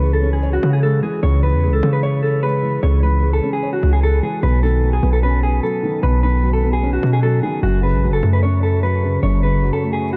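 Menacing and melancholic, this short cut from a longer trap piece moves at a heavy half-time pace, its harmony shifting from C# minor to Badd9 at 4.4 seconds and then to F# minor. A mellow electric guitar carries the melody in a clean, fingered, compressed tone, its dark notes trailed by delay. Beneath it, a felt-muted upright piano supplies the accompaniment with a soft, boxy, intimate sound dulled by thick felt. Up front sits a hard-hitting 808-style bass, punchy and heavy with a sine body, a noise layer and a fast attack that decays, and it drops out at 9.7 seconds while guitar and piano carry on to the end. Light reverb and a small room ambience frame the dark, warm production.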